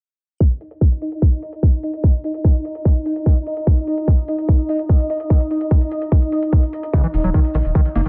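Psychedelic trance at 147 BPM in 4/4, alien and intense, cut from a longer piece: a tight, up-front electronic kick and faint metallic hi-hats drive from 0.4 seconds, while a pulsing, detuned gated synth texture holds sustained chords with chorus, reverb and sidechain pumping under a filter sweep. At 6.9 seconds a squelchy, gritty overdriven acid bass riff arrives with delay and pumping, alongside a very quiet, grainy tube shaker, and a round, deep analog bass joins up front at 7.1 seconds. The dense, heavily limited master is dry and low-pass filtered.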